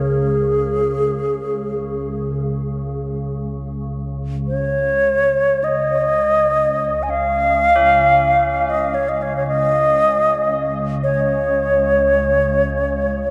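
An airy, close-miked alto flute carries an expressive, vibrato-laden melody in free time over a pure, sustained organ-like pad drone on a low Db, with tape echo on the flute and chorus on the pad. Solemn, ringing tubular bells join in the background at 7.8 seconds, and everything is bathed in a huge, dark ambient reverb that gives this Db major pentatonic meditation excerpt a spacious, peaceful feel.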